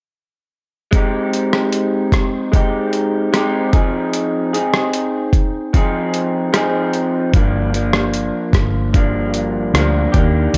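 Dark, warm production with moderate spring reverb frames this hazy, dreamy indie and bedroom-pop fragment, where a slightly broken-up electric guitar through a small old amp, touched with subtle chorus and warbly pitch drift, carries the accompaniment up front over a gritty, overdriven soul sampler-style kit of thumpy kick, rim click and hi-hat, until a round, foam-muted vintage bass joins at 7.3 s.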